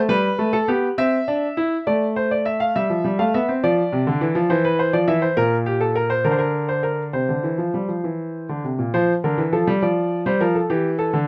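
Classical baroque-style two-part invention for solo concert grand piano, joyful and stately, moving in a straight 6/8 at 68 dotted-quarter beats per minute and tuned to A4 = 438 Hz. Cut from a longer piece, it opens in C major and turns to F major at 5.4 s, the lines spanning Bb2 to F5. The piano sounds clear and open with a deep bass, captured up front by close, detailed microphones in light reverb.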